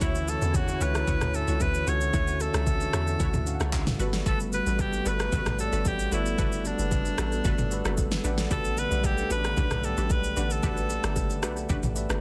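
A dense, heavily limited modern master with digital ambience frames this soulful, late-night amapiano excerpt at 113 BPM in a straight 4/4, moving from Dmaj9 to Gmaj9 at 4.0 seconds and on to A13sus4 at 8.2 seconds. Up front, a bright, pop-style alto saxophone carries the solo melody through a digital delay until it drops out at 11.6 seconds. A clean tine electric piano, heard through a combo amp, fills in the accompaniment, while a hollow, flute-like pad with a soft attack holds detuned, chorused chords in the background. A punchy, full-bodied chord stab with a filter pluck adds decaying hits, treated with chorus and delay. Underneath, a bouncy, percussive log drum bass with a fast attack and a noise layer meets an electronic, tape-warm deep house kit with a deep kick, a fat snare with soft clipping, handclaps, rim clicks, shaker and toms. Very quiet, distant acoustic congas and bongos ring out from a large room.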